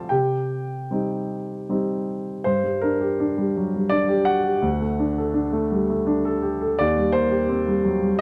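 In a rubato 3/4 that drifts around 75-85 BPM, this brief fragment of a neoclassical minimalist piano piece unfolds in G harmonic minor, tuned to A4 = 441 Hz. A solo grand piano carries everything across its full 8.2 seconds, ranging from D2 up to D6, with a warm, short-sustain tone placed up front. The opening phrase rests on Cm before a second passage begins at 2.5 seconds on Gm, moving to D and settling on Cm7/Eb at 6.8 seconds. Light reverb and a dark, warm production shape the sound. The mood is reflective and melancholic, like a private thought caught mid-sentence.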